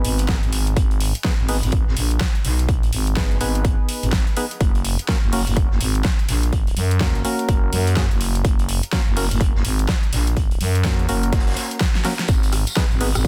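A growling, thick FM bass sits up front in this gritty, swaggering bass house excerpt, driven by tube saturation, sidechain pumping and a filter sweep that runs through the whole passage. A big-room dance kit with a huge snare, metallic hats and a rim click plays from the start, and a punchy electronic kick arrives at 0.3 seconds, all layered and re-recorded in a small room. Underneath, a raw garage kit adds a high-tuned snare and saturated, mid-forward hats in the background, thinned by high-pass filtering, while the hats pump with the sidechain. A hollow, dark organ-like stab punctuates the groove with chorus, dub echo and the same pumping, moving from G#m to F# and back to G#m. A drum fill at 11.9 seconds leads to a jingly tambourine entering at 12.3 seconds, all inside a dense, heavily limited modern master with a swung sixteenth-note feel.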